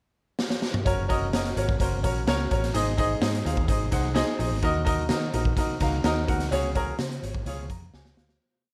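Danceable and uplifting, this short uptempo piece in a 1960s soul style moves at 127 BPM in a straight 4/4, set in Gb lydian. A raw garage drum kit opens with a fill at 0.4 seconds, its punchy kick, medium-tuned snare, hi-hat and toms sounding gritty and saturated in a bright, pumping stone room, driving a backbeat soul groove up front. At 0.9 seconds a clear grand piano and a vintage fingered electric bass arrive together: the piano, natural and slightly worn, plays close-voiced chords in eighths with short fills, while the dark, foam-muted bass carries a round, melodic, syncopated line with slides and chromatic approach notes. The chords move from Gb through Ab and Ebm to a Dbsus4 that resolves to Db, and another drum fill near the close falls within a fade-out that begins at 6.5 seconds. A moderate club reverb gives the whole a lively, compact sense of space.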